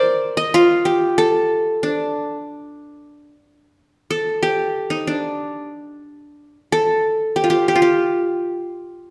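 Soulful and melancholic, this short passage, cut from a longer piece, comes from an Arabic maqam ensemble setting in D maqam kurd. It moves at a moderate 92 BPM in a straight 4/4 feel. A solo acoustic qanun carries everything from start to finish, its plectrum-plucked triple strings giving a bright-edged attack as it ranges between D4 and Eb5. The instrument sits up front, yet a generous recital hall reverb surrounds each note with a lingering bloom. The phrasing shifts to a new section at 3.1 seconds, which unfolds until the close at 9.1 seconds.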